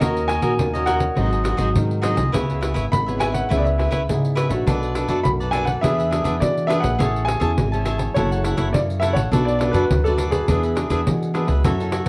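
Festive and playful, this samba-choro excerpt sets an intimate baby grand piano melody, carrying tape echo and audible action noise, over crisp picked cavaquinho, bright fingerpicked nylon-string guitar, a woody pizzicato upright bass sitting up front and a jingly pandeiro played with soft hands, the piano dropping out at 11.3 s while the whole cut wears the warbling pitch drift of worn cassette tape in a moderate studio reverb.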